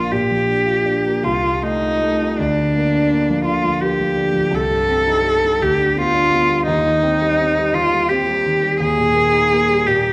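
Heard in a wet recital hall with a 1.5-second reverb, this lyrical, serene 10.1-second passage of romantic classical music, cut from a longer piece, sets a single bowed cello up front, smooth and even with vibrato, singing the melody over an up-front grand piano whose dark, mellow tone and deep bass carry the accompaniment, all in a rubato 6/8 at 56 BPM (dotted quarters) in Bb major, moving from Bb through F7/C and Cm to G7/D before settling on Eb.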